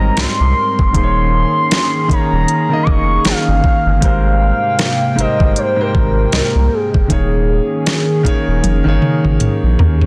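Contemporary R&B in a tender, romantic mood, cut from a longer piece, where a gliding portamento lead with vibrato sings over a warm concert grand piano, a hollow, flute-like pad with sidechain pumping, a thick saturated sub bass, a very quiet dark pluck and a smooth drum kit with a knocking kick, deep snare and 12-bit sampler grit that enters at 0.2 s and closes with a fill from 8.6 s, all in a dense, heavily limited modern master.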